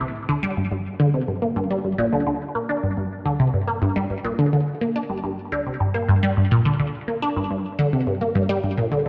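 A resonant blip pluck plays alone from 0.0 to 9.1 s in this hypnotic, mysterious ambient excerpt in G minor at 106 BPM, its squelchy, detuned sawtooth tone with a sub octave sitting bright and up front between G2 and D4, colored by phaser, lush chorus, cassette tape and delay, and bathed in a wet concert hall reverb.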